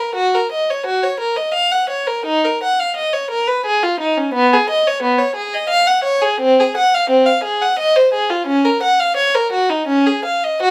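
In a flowing, rubato 3/4 at 87 BPM, this solemn baroque-style suite movement in Eb minor features a single unaccompanied bowed violin with a reedy gut-string tone and light vibrato, spanning B3 to F#5 in period style, captured up front by close, detailed microphones with light reverb across a brief 10.7-second cut from a longer piece.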